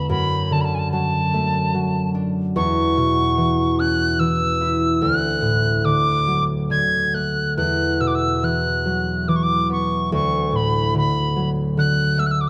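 Moving in a rubato 3/4 at around 72 BPM, this Celtic slow air drifts with an unhurried, wistful, pastoral mood. A mellow metal tin whistle carries the melody across the full 12.5 seconds, its pure tone shaded with vibrato and the soft chiff of tongued notes, expressive and up front. Beneath it, a concert harp provides fingerpicked accompaniment with acoustic, ringing strings that sit close in the mix. The harmony moves from D/F# through C#m7/E and D to Esus2 before returning to D. A moderate recital-hall reverb and a dark, warm production give the pair a gentle sense of space in this brief passage cut from a longer piece.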